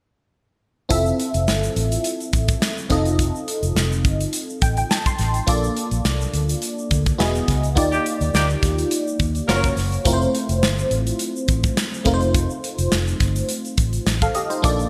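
A breezy, upbeat 1980s jazz-funk pop excerpt with a lightly swung 16th-note feel, where a glassy, bell-like FM electric piano treated with phaser and chorus sits up front over a dark, foam-muted fingered bass, a punchy modern drum kit with gated reverb, and a very quiet grainy egg shaker, as the piano takes a fill at 4.3 seconds and a mellow horn section with light vibrato joins a band accent around 7.9 seconds over shifting major-seventh and ninth chords, all in a bright digital production with a lush hall reverb.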